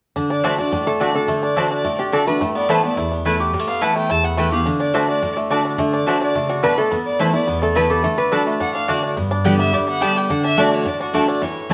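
A straight 4/4 at 213 BPM in D major carries this virtuosic, rustic bluegrass excerpt: a smooth, close bowed fiddle with light vibrato and a twangy, percussive fingerpicked banjo share the melody over a bright, full-bodied jumbo steel-string guitar up front and woody double-string mandolin stabs, while a nasal, metallic slide resonator adds a mellow second line at 0.9 and again at 6.5 seconds, as the band plays live in a wet stone room and the chords move between D and Asus2 before turning to G near the close.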